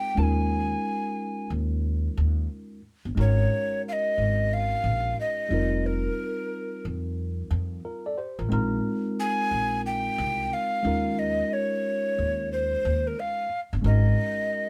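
A breathy tenor recorder carries the melody up front, its hollow, close-miked tone showing vibrato, a soft attack and a touch of chiff, in this smooth, cool jazz-hop cut from a longer piece at 90 BPM with a swung 16th-note feel and tuning at A4 = 438 Hz. Underneath, a worn, slightly out-of-tune tine electric piano with phaser plays accompaniment while a woody pizzicato upright bass on steel strings sits prominently at the low end, entering at 0.2 s and stopping at 14.1 s. The trio plays live in one room with light reverb, moving through suspended ninth chords from Eb9sus4 to Ab9sus4 as the same section repeats from 8.5 s.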